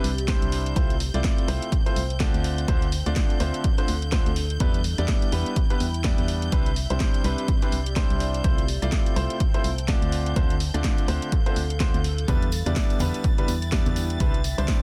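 Uplifting and euphoric, this piano house passage is cut from a longer piece and rides a swung groove in 4/4 over a chord cycle of Cadd9, Fmaj7/C, Dm7, Em7 and Cmaj9. A brilliant grand piano carries the riff with long sustain and a touch of delay, while a hollow, organ-like FM bass with a fast, decaying attack sits darkly beneath it, both pumping against the kick. That electronic kick drum arrives at 0.3 s, punchy and up front, landing on a garage drum kit already playing from the start with a cracking snare and warm hats. In the background, a lush bowed string section holds high sustained chords with vibrato, and a warbling, nostalgic lo-fi pad drifts through chorus, phaser and its own reverb, both breathing with the sidechain. A barely audible downlifter opens the first 0.8 s, and ringing congas and tambourine played with hard hands slip in at 12.3 s, all within a dry, dense and heavily limited modern master.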